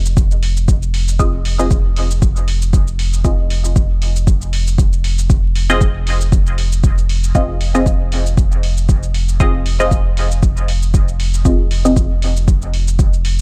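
An overdriven, deep electronic kick drum sits up front in this cavernous, meditative dub techno piece at 117 BPM in F minor, alongside a round sine sub bass and muted, detuned chord stabs that both pump with the sidechain, the stabs carrying phaser, 12-bit sampler grit and dub echo over a single Fm7 chord, while metallic electronic shaker and hi-hat sit low in a dry, gritty recording with transformer saturation, vinyl crackle and digital ambience.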